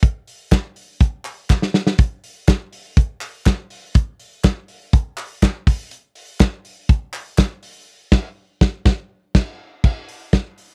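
A loose indie pop drum kit with a punchy kick opens this nostalgic, breezy excerpt up front in a dry, close 1970s-style studio sound, with dark cymbals, a medium-tuned snare and a short fill at 1.5 seconds, while a crisp, saturated group handclap sits farther back from 0.5 to 7.5 seconds before a band accent hits at 7.9 seconds.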